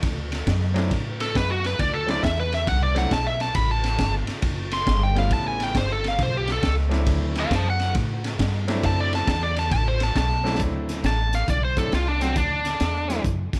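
Electric blues shuffle with a gritty, laid-back swing, where a biting, overdriven lead guitar solos up front over woody, thumpy pizzicato upright bass, a crunchy, saturated drum kit with dark cymbals and a punchy kick, and a worn baby grand piano accompanying with long sustain, all in a small room, with a drum fill at 10.4 seconds.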